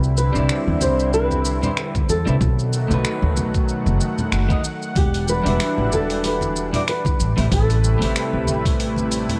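Sunset chillout at 94 BPM in 4/4, with a lazy 16th-note swing and a relaxed, warm mood, set in E minor and cut from a longer piece. A lush, thick unison pad of detuned sawtooth voices carries sustained chords through Cmaj9, B7, Em9 and Am9, its slow attack and long release warbling with a vintage chorus shimmer. An up-front upright bass anchors the low end with woody, thumpy pizzicato on steel strings. Above it, a dark, thumb-plucked flamenco guitar carries the melody from 0.2 s with audible finger squeak, roughened by 12-bit sampler grit and trailed by delay, while a picked electric guitar at the edge of break-up adds compressed accompaniment through digital delay. A dusty, sampler-style soul kit of finger snaps, hi-hat and shaker, re-recorded in a small room, sits gently underneath with very quiet, soft-handed congas, and a gritty, thumpy electronic kick joins at 1.9 s. Light reverb and digital ambience wrap the mix in a gentle sense of space.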